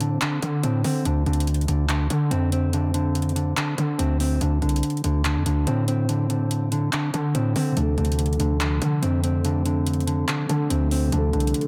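Melancholic and brooding, this short trap excerpt moves at 143 BPM in a half-time feel in D minor, resting on a single Dm7 chord. A dark, clean electric guitar plays up-front fingered arpeggios through a low-pass filter and analog delay, while a heavy, aggressive distorted 808-style bass with a fast attack and decaying tail sits beside it and the electronic drum kit adds handclaps and metallic hi-hats. At 7.7 seconds, muted, felt-like synth keys enter in the background with chorus and delay, adding an intimate, soft layer to the echo-heavy mix with light reverb.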